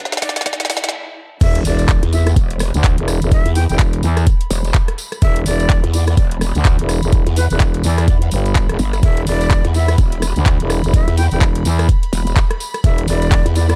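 A growling, aggressive growl bass wobbles through a formant filter with chorus and tube saturation from 2.0 s, alongside a thick, overdriven FM bass that enters at 1.4 s, both pumping against an up-front, knocking electronic kick in this swaggering, bouncy bass house excerpt. A breathy jazz flute carries the melody with vibrato and delay over a garage kit of woody snare and metallic hats, a jingly tambourine and an airy, warbling pad that also pumps in the background. A riser and sub drop lead the build-up, which breaks at 0.9 s before the drop lands at 1.4 s, all within a dark, dry production.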